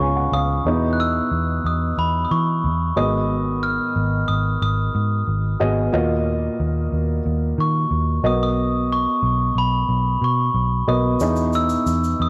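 A dark, woody upright piano plays a short opening fill before settling into mellow accompaniment, alongside a glockenspiel played with soft plastic mallets whose bell-like, airy melody rings over the top from the very start, both carrying a cassette tape character. A round, foam-muted electric bass sits up front beneath them, anchoring a hopeful, warm piano-driven pop groove through chords such as Emaj7, G#m7, D#madd9 and Bmaj7. Near the close of this excerpt, at 11.2 seconds, a grainy egg shaker enters faintly from a distant, large-sounding room, adding to the homespun feel of the light reverb.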